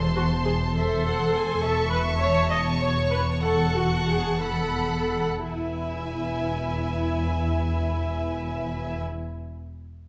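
A moderate scoring-stage reverb surrounds this cheerful, graceful classical-period movement for symphony orchestra, a 6/8 in E major at 54-68 BPM (dotted quarters), played with rubato and slowing from 0.7 to 5.5 s before the music settles on an E major chord. Over a low E from the focused, smooth-topped double basses and the warm, expressive cellos with portamento, a lush, dark viola section sits up front in the accompaniment from 0.2 s. An intimate, sul tasto violin melody with light vibrato floats high above a rich, even second violin line, as the harmony moves from Am/E through A/E and B5/E.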